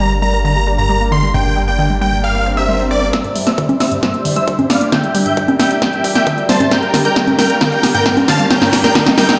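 This excerpt of emotional, driving uplifting trance at 134 BPM in 4/4, tuned to A4 = 439 Hz, opens on a huge, euphoric supersaw lead carrying the melody up front, with filtered, delayed and pumping detuned saws, over a round, chorused analog pluck arpeggio under a filter sweep and a punchy, funky analog bass on G1 with tube saturation, all moving through Gm. A background swell enters at 2.4 seconds, and at 3.1 seconds the bass stops as the harmony shifts to Cadd9 and a build-up begins: a tape-warm analog drum machine hits up front with congas, pumping hi-hats and a punchy snare in a drum fill, a layered electronic kick sits behind it, a riser climbs, and a higher supersaw stab adds a filter-swept second line. The chords return to Gm at 6.7 seconds, and the whole mix sits in a lush hall reverb, played on a big sound system in a bare room.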